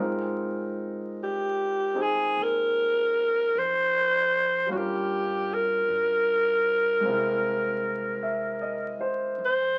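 A jazz ballad in Ab major at a slow 51 BPM with a gentle swing, intimate and romantic, cut from a longer piece. A clear concert grand piano with deep bass supplies the accompaniment while a woody pizzicato upright bass sits in the background, and at 1.2 seconds a raspy, growling alto saxophone with light vibrato takes the solo melody, close-miked and up front. A moderate studio reverb surrounds the trio, and the sound carries the crackle of a very old 78 rpm record.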